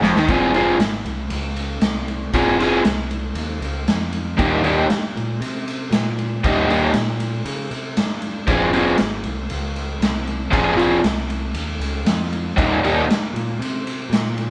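Raw and swaggering, this garage rock cut from a longer piece struts along at 117 BPM in a straight 4/4, set in F minor. A drum fill kicks things off at 0.0 seconds, with the kit's punchy kick, medium-tuned snare and ride cymbal sitting up front in a saturated, gritty sound with a rolled-off top. The double-tracked, overdriven guitar carries the picked riff, its tone warm and forward, over chords that move between Fm and Eb. Beneath it, the picked electric bass growls with bright, punchy fuzz. The band sounds like it is playing live together in one large studio, with a moderate reverb around it, and the guitar drops out at 13.0 seconds while bass and drums carry on to 14.5 seconds.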